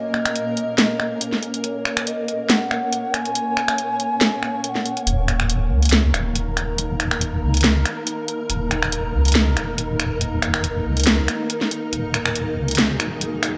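Over a half-time garage kit at 140 BPM with lightly swung 16ths, cracking snare, warm hats and finger snaps, this dark, cavernous deep dubstep excerpt in Eb minor opens with an airy, hollow ney melody trailing dub echo above a blurred granular pad and a breathy, wind-like noise layer, until at 5.1 seconds the ney stops and a deep, chorused wobble bass takes over as a filter sweep builds through to 13.6 seconds in a lush hall.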